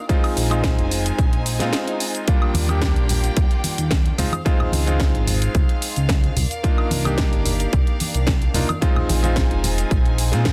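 A sunny, feel-good nu-disco excerpt in straight 4/4, cut from a longer piece and built on lush extended chords that move from Bb9sus4 through Ebmaj9, Dbmaj9 and Cm11. A punchy, overdriven electronic kick sits up front with a layered house kit of hi-hat, shaker, cracking snare and woodblock, both re-recorded in a large room, while a glossy, retro chorused synth bass with a moving notch and pulse-width character pumps under sidechain from 0.4 seconds. A bright, clangy electric grand piano carries the accompaniment through digital delay, and a smooth, distant violin section holds sustained chords in the background, its bowed vibrato shaped by the same sidechain pumping. A very quiet electronic swell leads into a short break at 1.7 seconds, after which congas join at 2.5 seconds, close yet tucked behind the groove. The mix is dense and heavily limited, bathed in digital ambience for a polished modern dance sheen.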